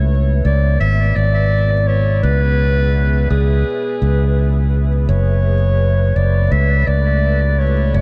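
A fingered electric bass sits up front in this short passage of hazy, spacious ambient dub, its warm, direct tone holding the low end throughout. Above it, a distant, roomy clarinet carries the melody in a classical style, its warm voice roughened by vintage 12-bit sampler grit and trailed by dub echo. Beneath the clarinet, a deep, moody pad of detuned sawtooth and sine voices with a sub octave holds long, slow-blooming chords, colored by a moving notch, chorus and its own reverb. The harmony drifts from C#m7 to F#m7 at 5.1 seconds in a straight 4/4 pulse. A layer of vinyl crackle and light small-room ambience wraps the whole mix in a dusty, hazy atmosphere.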